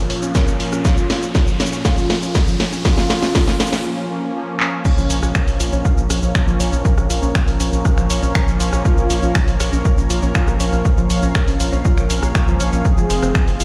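In a straight 4/4 pulse, this dramatic, hypnotic melodic techno excerpt builds with a riser, a drum fill and a filter sweep into a short break, then drops at 4.9 s, where a gritty, saturated synth bass joins the punchy, overdriven kick and the cracking-snare techno kit, while a smooth detuned pad, a warbly lo-fi pluck arpeggio with delay and fat brassy synth stabs pump under sidechain, and a thick unison lead with dub echo drifts through, the whole mix ringing in a stone-room reverb.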